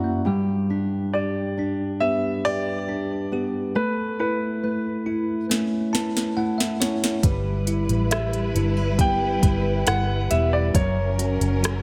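Longing and melancholic, this slow pop ballad moves at 69 BPM in a straight 4/4, cut from a longer piece. A bell-like tine electric piano and a fingerpicked steel-string acoustic guitar, its tone dark with audible finger squeak, carry the accompaniment from the start, and the electric piano adds fills at 0.0 and again from 5.5 seconds. A clear concert grand piano with a polished, short-sustain tone and a touch of delay sings the melody from 1.1 seconds over chords moving from G to Aadd9, then Em/G and F#. At 5.5 seconds a smooth R&B drum kit arrives with a fill, its soft kick, sharp snare, rim click and smooth hi-hat sitting up front with a large-room sheen. At 7.2 seconds a lush, bowed studio string section with vibrato joins on sustained chords, while a vintage muted fingered electric bass adds a round, punchy low end. Light reverb and small room ambience surround the mix.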